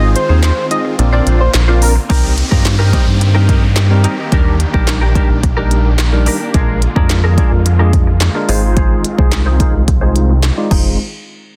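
A straight 4/4 pulse at 108 BPM drives this energetic dance-pop excerpt in F dorian, where a glitchy electronic drum kit with deep kick, tiny snare and clicky hats sits up front beside a round, dark, sidechain-pumped analog bass, and a barky, bell-like electric piano and a twangy, direct-recorded clean guitar riff ride over huge, lush supersaw chords in the background, while a bold, retro octave-doubled lead with chorus and delay carries the melody only until 1.9 seconds and a faint downlifter enters at 2.1 seconds under a filter sweep, all in a dry, dense, heavily limited mix.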